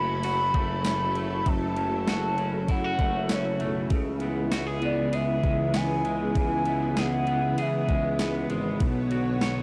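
A straight 4/4 pulse from a crisp, overdriven 8-bit drum machine with thumpy kick, snare, ride and tambourine enters at 0.2 s beneath this dreamy, floating dream pop fragment, where a twangy, slightly broken-up electric guitar plays arpeggios up front, a silky string machine holds sustained chords with ensemble chorus, a warm tuba with vibrato carries the bass, and a hollow, woody clarinet-like synth lead sings the melody through chorus and tape echo until 8.5 s, all set in a dry, gritty recording over chords moving from F#m to C#m7 to Bmadd9.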